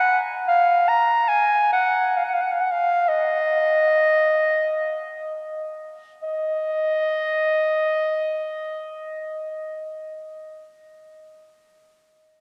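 Grave and flowing, this short cut from a baroque-style classical fantasia in Eb minor features a lone clarinet, warm and up front, moving in a rubato 3/4 between 53 and 76 BPM within a range of Eb5 to Bb5, slowing through its first 6.2 seconds before a new section begins, all bathed in a vast cathedral reverb with a 6.1-second decay.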